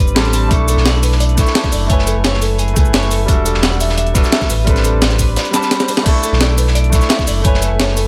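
Liquid drum and bass at 173 BPM, this short excerpt from a longer piece has a melancholic, rolling mood, moving through minor eleventh chords such as Am11, Bm11, F#m11 and Em11. A concert grand piano carries the accompaniment with an intimate, polished tone, long sustain and audible action noise, its notes trailed by delay. Alongside it, a bright, twangy twelve-string electric guitar plays clean, picked arpeggios, also with delay. A deep, sine-like sub bass with an octave sits up front, full and sustained, while a knocking, tape-warm electronic kick enters at 0.5 seconds. Two breakbeat kits drive the groove: a gritty, pitched-up sampler-style kit with crash, hi-hat, shaker and snare, and a saturated acoustic kit in the background with a rolled-off top and high-pass filtering on its hats, snare and room. A drum fill from 5.5 to 6.1 seconds leads back into the drop, all set in a studio reverb.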